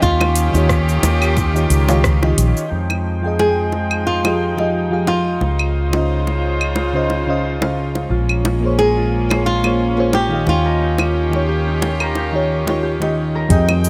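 A relaxed, smooth sunset chillout excerpt at 89 BPM opens with a fingerpicked flamenco guitar melody over a dark, round FM electric piano treated with chorus, phaser and delay, reedy gut-string chamber strings, and a growly, up-front fretless bass moving through Eb9, Fm9, Dbmaj9 and Bbm9. A soft electronic kick sits in the background until 2.2 seconds, while a tape-warm R&B kit with metallic hats, cabasa, claves and rim click, plus close, dry low-tuned bongos, carries the swung groove. At 8.1 seconds a mellow, ringing Celtic harp adds arpeggios with delay deep in the light studio reverb.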